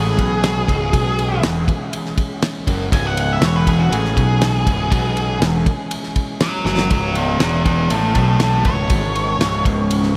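A straight 4/4 pulse at 120 BPM drives this dark, hypnotic psychedelic rock excerpt over a single C# minor chord. An up-front damped 70s drum kit, with a fat snare, tight kick and rolled-off top, plays a fill at 6.7 seconds. A warm, overdriven fuzz picked electric bass holds the low end, while a bright, double-tracked overdriven semi-hollow guitar riff with phaser and dub echo sits in the background. A very quiet pipe organ sustains soft flute-stop chords, and an up-front octave-fuzz lead guitar solos with a dark, distorted tone and dub echo until 9.6 seconds, inside a moderate cathedral reverb and an echo-heavy mix.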